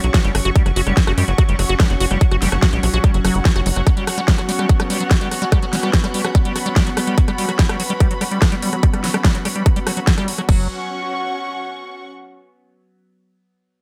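Set in a digital ambience, this alien, intense psychedelic trance excerpt at 145 BPM opens on an F#5 chord, driven by a punchy, overdriven electronic kick up front and an overdriven big-room dance kit with a huge snare, metallic hats, rim clicks and crash cymbals. A squelchy, resonant liquid acid bass riff with chorus and delay moves through a filter sweep that lasts until 10.5 seconds, while a tight sequencer bass with a fast, decaying pluck plays until 3.8 seconds and briefly returns at the close. An evolving wavetable pad with phaser and built-in reverb sustains chords in the background, and a biting symphonic string section with light vibrato pumps to the sidechain and carries on alone to 12.1 seconds.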